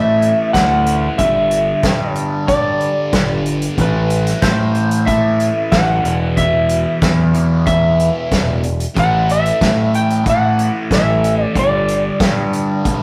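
A rough rehearsal-room recording in a moderate stone room gives this 13-second psychedelic rock excerpt a raw, echoing character, its hypnotic, trippy mood set at 93 BPM in a straight 4/4 over A5, G5, Amadd9 and E5 chords. A dark, slightly broken-up electric slide guitar, played with fingerpicks, carries the melody. Beneath it, a double-tracked, compressed fuzz guitar with distortion and phaser churns out a low riff, and a growling, overdriven picked electric bass sits punchy and up front. A roomy soft-mallet drum kit with a medium-tuned snare and hi-hat joins at 0.2 s, anchored by a punchy kick.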